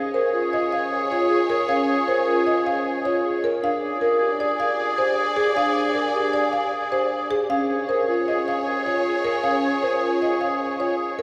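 Moving in a straight 5/4 at 155 BPM, this hypnotic, urgent fragment of minimalist classical pattern music is cut from a longer piece. A buzzing marimba played with medium mallets carries the melody, its hardwood bars sounding woody, dry and close-miked. Beside it, a vibraphone with soft mallets spins arpeggios in a mellow, vintage, band-limited tone, ringing up front with a motor vibrato. A clear oboe holds a second line on Ab4 with light vibrato and a soft attack, while a lush symphonic string section sustains bowed chords with expressive vibrato. The harmony moves from Bbm7 to Bb7 at 3.6 seconds and settles on a rootless Eb9sus4 at 7.5 seconds, all set in a church or concert hall with a long, wet cathedral reverb.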